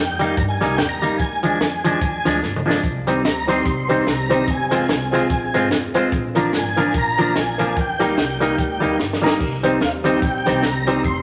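Driving and energetic, this ska excerpt runs at 146 BPM with a swung feel, led by a smooth tonewheel organ melody with chorus vibrato, key click and slow rotary speaker over a growly pizzicato upright bass, a twangy, compressed clean electric guitar up front, a punchy, dry compact cocktail drum kit with a high-tuned snare and dark cymbals that plays fills at 2.4 and 9.0 seconds, a grainy cabasa in the background from 2.8 seconds, and clear, slightly detuned upright piano stabs from 3.1 seconds, all set in a wet large studio reverb.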